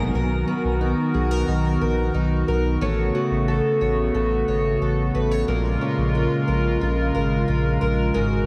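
A straight, unhurried 4/4 pulse underlies this ethereal, melancholic slice of dream pop, cut from a longer piece. A fingerpicked twelve-string acoustic guitar sits up front, its octave-doubled arpeggios shimmering through lush chorus and delay, while a hollow, flute-like pad holds sustained chords with a slow attack and its own chorus. Beneath them, a deep, round sub bass with a sine tone carries the low end, and a bright, twangy electric twelve-string is heard only very faintly in the first 0.7 seconds. The harmony moves from Bmaj7 to A69 at 2.8 seconds and on to A#m7 at 5.5 seconds. Light reverb and a small room ambience surround the parts, though the whole mix carries a heavily compressed, radio-like sound.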